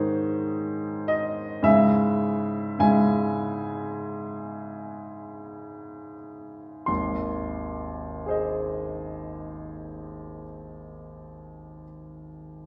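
In a rubato 4/4 at 38-54 BPM that slows through the first 6.9 seconds, this passionate, hopeful romantic character piece for solo baby grand piano in Ab major, taken from a longer work, offers a clear, open tone with long sustain sitting up front across Ab1 to C6, moving from Ab to Dbm/Ab and back to Ab at 6.9 seconds, heard from further back in a wet recital hall whose reverb lingers 1.3 seconds.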